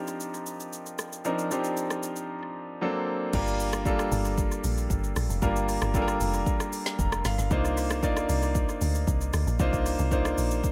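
This soulful, deep amapiano piece opens with a clear concert grand piano playing accompaniment chords in G minor, moving from Cm11 to D7b13, joined almost at once by an electronic deep house drum kit. The kit is layered and up front, with a deep kick, a woody snare, smooth hats, rim clicks, shaker and crash cymbal, all treated with tape echo. Moving at 115 BPM in a straight 4/4, the piano has a polished, present tone with long sustain and a full low end, and it adds short fills just before the drop and again around 6.7 seconds. At 3.3 seconds the drop arrives on Gm7 and a round, dark log drum bass enters, its fast attack and decaying, percussive thump carrying a noise layer. The chords return to Cm11 at 7.5 seconds under a light reverb in an echo-heavy mix, and the passage is cut from a longer piece.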